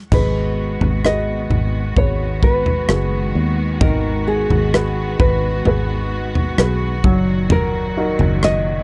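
A growly, foam-muted fingered electric bass sits up front in this short slice of a longing, emotional pop ballad, its punchy, direct tone anchoring the low end from 0.1 seconds. Above it, a thumb-plucked nylon-string guitar carries the melody with a classical touch, while a baby grand piano with an open sound and short sustain fills in the accompaniment. A rich symphonic string section holds sustained chords from a distance, bowed smoothly and evenly with light vibrato. An acoustic studio drum kit with an airy, polished small-room sound and a punchy kick adds crash cymbal, rim clicks and toms, falling away at 8.6 seconds just before the others. The harmony rests on Abm7 before moving to Ebm/Gb at 7.0 seconds, all captured in a dry, close 1970s-style recording with little reverb.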